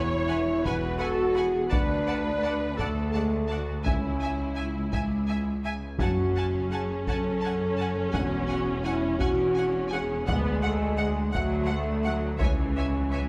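Relentless and epic, this cinematic orchestral passage in 6/8 is cut from a longer film score. A mellow French horn section sits up front with sustained chords, while a lush, smooth viola section carries the accompaniment and cello and double bass sections anchor the low end in the background. From 0.3 seconds two violin sections join: a distant, vibrato-laden studio section carries the melody in the background, and a clear, intense symphonic section adds a second line. A taiko ensemble struck with heavy sticks in a live room enters at 0.7 seconds. Very quiet timpani with calf heads and medium mallets appear around 6.0 seconds and return for a fill at 12.4 seconds, and the orchestra sounds through a moderate concert hall reverb.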